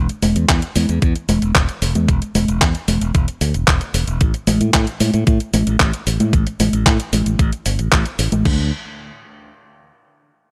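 A dry, gritty hardware sound with digital ambience frames this playful, danceable italo disco cut from a longer piece, moving at 113 BPM in a straight 4/4. A bright, growly fingered electric bass opens at 0.0 seconds, punchy and direct up front, ranging from E1 to A2. A clean 12-bit drum machine with a sampler-style character adds cabasa, congas, crash cymbal, handclaps and hi-hat, all pushed forward with overdrive. An electronic kick drum enters at 0.5 seconds, thumpy and overdriven, sitting slightly louder than the other parts. A new section begins at 8.5 seconds.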